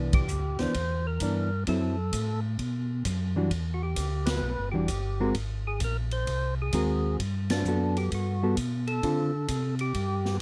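A hollow-body electric guitar, dark and clean with a fingered tone, opens this soulful, greasy soul jazz organ trio on a Cmaj9 chord, alongside a mellow tonewheel organ that carries the bass line with a round, clean sound, chorus vibrato and a slow rotary speaker; both the guitar and the bass organ sit up front. A moment later a second tonewheel organ takes the melody with a fat, lightly overdriven, percussive voice, its third-harmonic percussion and vibrato turning through a slow rotary speaker. A swinging big-band drum kit enters with them on a band accent at 0.1 seconds, playing hi-hat, ride, a medium-tuned snare and a boomy kick with a natural, big-room character, and further ensemble accents punctuate the passage. The groove swings at 130 BPM in 4/4 in G major, tuned to A4 = 436 Hz, moving through jazzy harmony such as F#m7b5, Em9, Ab9 and Gmaj9. The guitar drops out at 9.3 seconds before the passage closes on Dm7. 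The close, detailed miking and very little reverb give this short cut from a longer piece an intimate, present sound.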